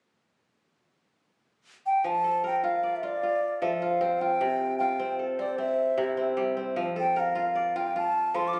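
Hypnotic and warm, this short cut from a longer West African traditional piece moves at 102 BPM in a straight 12/8, counted in dotted quarters, in F major with tuning set to A4 = 438 Hz. The bamboo bansuri carries the melody from 1.9 seconds, spanning D5 to D6 with an airy tone, vibrato, a crisp attack and lifted highs. Just after, at 2.0 seconds, the fingerpicked acoustic kora joins with ringing, crisp arpeggios from C3 to D5, touched by tape echo. Both parts sit up front over a simple F to C and back to F progression, and both play to the end at 8.6 seconds. The sound is that of a phone capturing the room, with light club reverb and compression.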